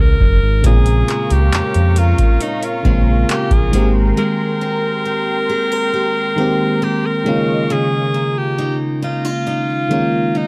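An edgy, punchy alto saxophone carries the melody with scooped notes over this tender, smooth contemporary R&B passage in Ab major at 68 BPM, cut from a longer piece. A booming analog drum machine with deep kick, metallic hi-hat and handclaps joins a mellow, ring-modulated synth bass with vibrato, and both drop out by 4.1 seconds. From 0.6 seconds, a glassy, bell-like FM electric piano with chorus, a lush detuned unison pad and bright picked steel-string acoustic guitar arpeggios move through Bbm7, Abmaj9 and Db69 in a dark, dry production.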